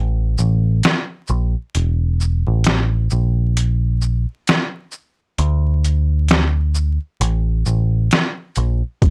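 The recording is dry and gritty, coloured by transformer saturation and a bed of vinyl crackle, and it plays as a fragment cut from a longer lo-fi hip hop track. The mood is melancholic and hazy, set in 4/4 with a 58% swing on the sixteenths, and the whole passage works as a break. A deep dub electric bass opens at 0.0 seconds, picked, dark and round, sitting low between E1 and D2 with a direct, amped presence. At 0.4 seconds a boom bap sampler-style drum kit joins, compressed, pitched down and tape-warm, bringing a thumpy kick, a medium-tuned snare, hi-hat, shaker and finger snaps. Both parts sit up front in the mix and carry on together to the end at 9.1 seconds.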